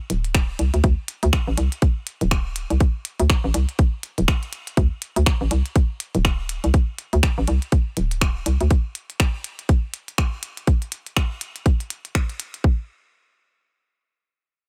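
A hollow, knocking FM bass with a bouncy, fast-attack punch and sidechain pumping sits up front from 0.1 to 8.7 seconds in this quirky, sparse minimal techno excerpt at 122 BPM with a 59% swing on the 16ths, joined by a tight, layered, tape-warm electronic kick and a clicky, overdriven minimal kit of finger snaps and hi-hat re-recorded in a small room, in a dry mix with little reverb.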